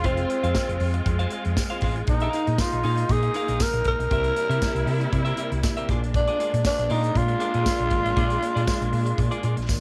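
A straight 4/4 disco groove at 118 BPM drives this glamorous excerpt, with a modern studio drum kit playing hi-hat, punchy kick and a medium-tuned snare in an airy small room, all carrying a cassette-tape tint. A hollow-body short-scale electric bass, played with the fingers, sits dark, round and amped down low, and a jingly, band-limited tambourine joins at 0.6 s. Up front, a growling tenor saxophone takes the solo melody in jazz style, breathy and raspy with subtone, scooped notes and vibrato, treated with cassette tape and analog delay. A clean, picked electric guitar adds compressed accompaniment, while a distant, lush string section holds biting, bowed chords with vibrato. The harmony moves from Fm through Bb7sus4 and C7 to Bb7, set in light reverb with the character of a home cassette recording.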